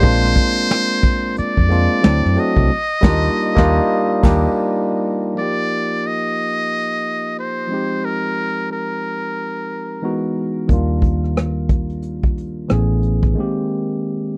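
The rhythm swings its sixteenths in an easy 4/4 groove, giving this smooth, soulful R&B and neo-soul excerpt a relaxed, unhurried feel. A vintage brush drum kit with a punchy kick, medium-tuned snare, rim click, hi-hat and crash sits in a small room with a dark, rolled-off top. It works alongside a round, foam-muted fingered electric bass that sounds amped and punchy. Both drop out around 4.4 to 4.5 seconds, during a band accent, and return at 10.7 seconds. Over the top, a trumpet with a metal mute carries the jazz-style solo melody up front, brilliant yet thin and buzzy, with breathy tone, light vibrato and scooped notes. Beneath it, a barky tine electric piano, lightly overdriven through a combo amp, holds down rich ninth and major-seventh chords. When the rhythm section stops at 13.4 seconds, the piano plays alone through the closing break, all framed by light reverb in a dry, close 1970s-style studio sound.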